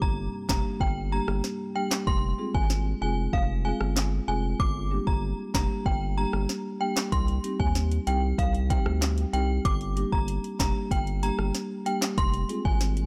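A dark, digitally ambient production frames this tough, sultry dancehall groove, cut from a longer piece and moving at 95 BPM in a straight 4/4 in G phrygian. An up-front electronic drum kit drives it with a deep kick, a sharp snare, metallic hi-hats, handclaps and rim clicks, while a round analog bass with a square-and-sine tone and a fast attack holds the low end with equal weight. A marimba played with soft mallets enters at 0.5 seconds, adding mellow, rounded accompaniment in the middle register. Above it, a chiming FM synth carries the melody high up, its inharmonic, ringing tone full-bodied and decaying into a long release through ensemble chorus and digital delay. The harmony moves between Gm, Fm and Cm, giving the single section a brooding, warm pull until the parts fall away near 13 seconds.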